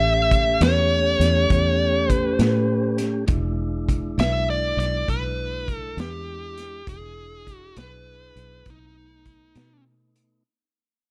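Slow blues in 12/8 at 67 BPM in E mixolydian, rollicking and swaggering, where a dark, overdriven lead guitar sings its melody up front through plate reverb over a mellow, flute-like tonewheel organ with key click turning on a slow rotary speaker, a round, foam-muted fingered bass, and a small-room vintage drum kit of tight kick, medium-tuned snare and hi-hat with a rolled-off top, moving from A7 to E7 and reaching B7 at 8.7 seconds as this cut from a longer piece fades out.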